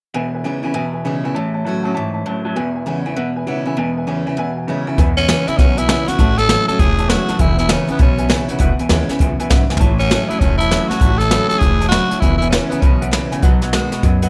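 Swung eighths at 199 BPM in 4/4 drive this rollicking, rowdy rockabilly excerpt in E major, which opens with a twangy, slightly broken-up electric guitar riff through a small old amp with phaser, a bright, full-bodied picked steel-string acoustic guitar in the background and a dark, mellow upright piano with long sustain. At 5.0 seconds a woody, thumpy pizzicato upright bass on gut strings joins an up-front jazz brush kit with a boomy kick, and a raspy, gritty tenor saxophone takes the growling solo melody from 5.2 to 13.1 seconds. A drum fill lands midway, and the piano closes with a fill of its own, all in a small room ambience.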